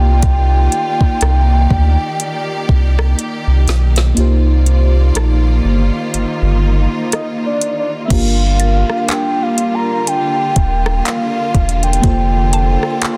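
A saturated sub bass sits up front with a deep, thick tone under a soft octave-layered synth lead that carries the melody with a round, dark voice coloured by chorus, tremolo and digital delay. This moody, longing contemporary R&B excerpt moves at 61 BPM with a swung 16th-note feel, as a dreamy FM electric piano with a soft pad layer provides accompaniment and a bright, intense studio string section holds sustained chords over a smooth, tape-toned drum kit of soft kick, woody snare, metallic hats, rim click, handclaps and crash. A drum fill arrives at 3.2 seconds, the kick drops out from 4.2 to 8.1 seconds while a very quiet, woody mallet-like synth pluck joins at 5.2 seconds, and the dense, heavily limited mix stays dry as the harmony moves from Cm11 to Gm7 and Bbmaj7/F.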